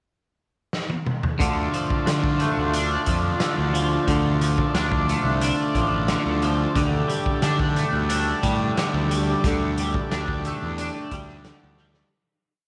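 Psychedelic rock at 90 BPM in 4/4 with a straight feel in D minor, this short, complete piece has a hypnotic, trippy mood. A raw garage drum kit opens with a fill at 0.7 seconds, sounding gritty and saturated with a punchy kick, a medium-tuned snare, hi-hat and toms, its top rolled off and the kit placed up front in a pop groove. At 1.4 seconds the groove begins as the rest of the band enters on a D minor chord: a twangy, clean electric guitar plays picked arpeggios through a rotary speaker, double-tracked and compressed, and a fuzz-drenched fingered bass with overdrive carries a round, syncopated riff. A vintage combo organ holds buzzy sustained chords, and the harmony shifts to Gsus2 over D at 6.8 seconds. Light reverb and small room ambience frame the band as the piece fades out from 9.4 seconds, closing on a final drum fill.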